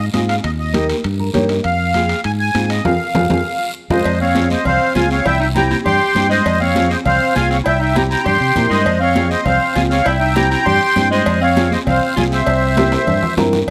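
A close, dry-sounding recording set in a moderate large studio reverb opens this brief, fiery cumbia cut at 200 BPM in F minor, shifting to F harmonic minor at 4.1 s, just after a bright, forceful clarinet enters at 3.9 s with light vibrato, scooped notes and a jazz-style solo second line beneath the reedy, sweet accordion melody with its light tremolo tuning up front. A warm, fingered electric bass sits forward, a dark, full-bodied, thumb-plucked nylon-string guitar accompanies with a fill at 1.0 s, and raspy guiro, thin-skinned high-tuned congas and ringing timbales with cowbell drive the danceable groove. A drum fill and a band accent close the opening section, another drum fill arrives at the end, and the harmony moves between Fm, C and C7.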